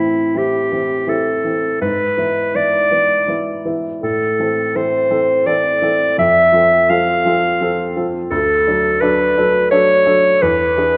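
Romantic classical duo in A minor at 84 BPM in a rubato 3/4, serene and tender, where a bright, punchy clarinet carries the melody up front from E4 to F5 over a warm, present baby grand piano accompaniment spanning D2 to A4, both playing throughout this 11-second excerpt cut from a longer piece, moving through Am, E7/G#, back to Am, then F, D and E7 in the moderate reverb of a scoring stage.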